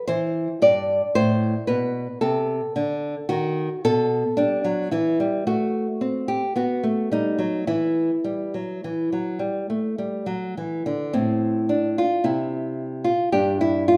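A lone nylon-string guitar opens this short fragment of a classical, baroque-style dance in E minor, its fingerpicked tone intimate and close to the listener. The mood is introspective and solemn, moving in a slow 3/4 at roughly 52-57 BPM with a rubato feel that lets the phrases breathe. The harmony travels from C/E through Amadd9 and B7/D# to settle on Em, then passes through F#dim/A and B7 before resolving again to Em. At 11.1 seconds the opening phrase begins anew, turning toward Am and arriving on G5 as the fragment ends at 14.0 seconds. The small, warm-sounding guitar sits up front in a moderate recital hall, where a reverb tail of about 1.3 seconds adds a gentle halo around each note.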